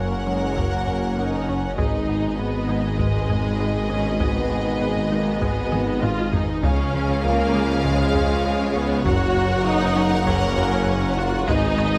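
Vast and relentless, this cinematic hybrid orchestral and electronic score moves at 99 BPM in G# dorian, with a lush violin section carrying a focused, vibrato-rich melody over a smooth second violin line, expressive viola accompaniment with portamento, and rich cellos, distant double basses, a mellow tuba and a thick, saturated sub bass anchoring the low end. Mellow French horns, very quiet loose trombones and a faint shimmering, retro pulse-width pad hold sustained chords, while a tight, driving sequenced synth plays detuned arpeggios and a round, dark analog bass plays a riff beneath. Compressed, heavy-stick taiko drums enter at 0.6 seconds and play a fill from 5.7 to 6.6 seconds, all set in a moderate scoring stage reverb with close, detailed microphones in this cut from a longer piece.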